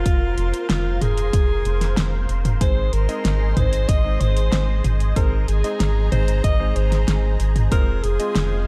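A breathy alto saxophone with vibrato and tape echo carries the melody from the start of this moody, cinematic synthwave excerpt at 94 BPM, over a lush, detuned unison pad with chorus, phaser and sidechain pumping and a round, deep analog bass sitting up front. A punchy electronic kick and a pop kit with fat snare, metallic hats and toms arrive at 0.1 s, and a vintage electric grand piano with clangy bass and delay adds stabs from 2.6 s. The chords move from Fsus4 to Ab and then Fm, in a dark production with light reverb.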